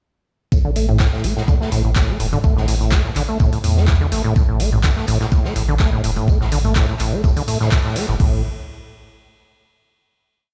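A thumpy, tape-toned electronic kick drives a straight four-on-the-floor pulse at 125 BPM, joined at 0.8 seconds by a booming analog drum machine with metallic open hats, claps, low toms and crash, while a saturated, rolled-off looped breakbeat from a raw garage drum kit with a high-tuned snare sits in the background. Over this trippy, gritty acid house groove, a squelchy, resonant sawtooth acid bass trailed by dub echo runs a seven-step loop with accents, slides and filter sweeps that drifts against the bar, its tube saturation and sidechain pumping shared with a round, deep sine sub bass playing a syncopated riff beneath it. The band hits an accent at 7.7 seconds before the groove gives way at 8.2 seconds to a closing chord, all set in a big, bare room with a large studio reverb.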